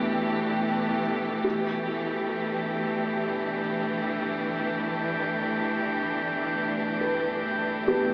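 In a straight, unhurried three-four, this serene ambient excerpt sets bowed, vibrato-rich studio strings holding softly attacked sustained chords up front over muted felt-piano arpeggios with audible action noise and tape echo, while an ethereal, beating glass harmonica fades in from 1.4 s as the harmony settles from Gmaj7 to G, and a very quiet, ominous rumbling drone enters underneath at 2.4 s, all bathed in huge reverb and a lo-fi AM-radio tone.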